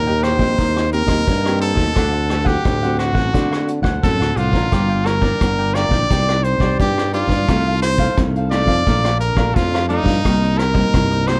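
A straight, lively samba-and-choro groove in four sets a playful mood in this short cut from a longer piece, carried by a vintage brush drum kit that sits distant and roomy, with a punchy kick, hi-hat and rim clicks, and a rolled-off top that joins at 0.1 seconds. Beneath it, a sustaining fretless electric bass sounds growly and bright, direct and amped, holding the low end at the same level as the lead. Up front, a brilliant trumpet takes the jazz-style solo melody, forceful and present, with scooped notes and a light vibrato. In the background, a crisp picked cavaquinho and a fingerpicked classical nylon-string guitar fill out the harmony as the chords move from Eb through D7 and Gm7 to Bbmaj7 and Cm7. Light reverb and a dark, warm production shape the whole passage.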